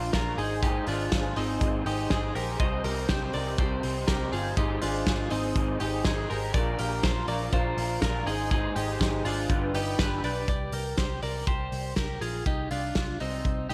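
Restless and wistful, this jangly indie pop excerpt in C minor moves at 122 BPM in a straight 4/4, with a bright, twangy twelve-string electric guitar picking arpeggios up front, a dark, slightly broken-up electric guitar through a small old amp adding lo-fi accompaniment with ensemble chorus and slapback echo until 10.5 seconds, a round, foam-muted picked bass, and a loose acoustic drum kit with a punchy kick and rolled-off top, all set in a lush hall reverb that gives a big arena sound as chords cycle through Abadd9, Cm, Bb and G before landing on Cmadd9.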